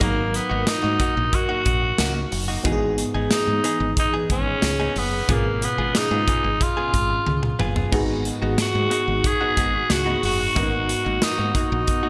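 1980s-style pop in G# minor at 91 BPM with an urgent, dramatic mood, where a breathy, raspy tenor saxophone carries the melody with digital delay over a lush, dreamy FM electric piano with a soft pad layer, a clean, compressed direct-recorded electric guitar riff, a round, woody fretless bass and a punchy, polished studio drum kit with gated reverb and a fill at 7.3 seconds, before a dark brass ensemble with light vibrato enters very quietly on sustained chords at 7.9 seconds, all in a bright digital production with plate reverb.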